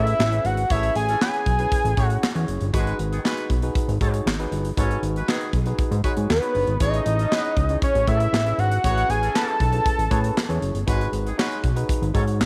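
Early-eighties boogie funk at 118 BPM, danceable and funky, where a fat, nasal, detuned sawtooth lead with vibrato and a sub octave carries the melody, drops out at 2.4 seconds and returns at 6.3 seconds, over a thick, saturated, wave-folded analog bass with a filter sweep, a clean tine electric piano through a combo amp, a distant, roomy horn section with light vibrato playing a second line, and a punchy, polished studio kit of kick, medium-tuned snare, hi-hat and handclaps, as the harmony moves between Amaj7 and G#m7 under light reverb.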